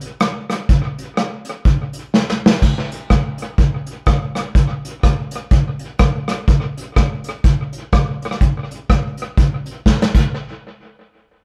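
A vintage brush drum kit opens this energetic, mischievous ska excerpt, working crash cymbal, hi-hat, punchy kick, rim click and a medium-tuned snare with lightly swung eighths in 4/4. Brushes give the kit a dark, smooth sound with dark cymbals and a rolled-off top, set up front in a small, lightly reverberant room with a touch of tape echo and the feel of a band playing live. Drum fills at 2.1 and 9.9 seconds mark the turns between sections, and the kit stops at 10.2 seconds.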